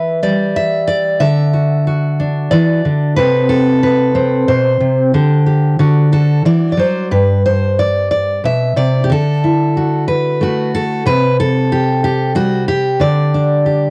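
Peaceful and hopeful, this short folk passage cut from a longer piece sets a lone fingerpicked steel-string dreadnought guitar up front at 92 BPM in an unhurried 3/4, its full-bodied tone and audible finger squeaks moving from Em through Dadd9 and Amadd9/C to a Dsus4 resolving on D, then into a second passage at 7.1 seconds built on G, Dadd9, C5 and Dsus4, all captured as a home cassette recording with cassette tape character, light reverb and the intimate ambience of a small room.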